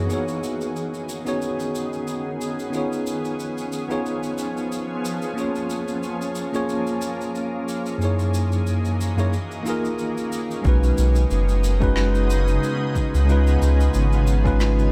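A clean, up-front tine electric piano carries this wistful, relaxed sunset chillout excerpt at 91 BPM with a gentle 16th-note swing, its tape echo drifting over a shimmering, ethereal pad with chorus and a filter sweep through the first 10.7 seconds, while soft cabasa and rim click with a rolled-off top tick quietly underneath. At 10.6 seconds a deep, round sub bass and a punchy, layered electronic kick drop in, giving the closing passage more weight as the chords cycle from B69 through C#7, A#m7, F#13 and D#7sus4. A light, small-room reverb keeps the sound intimate.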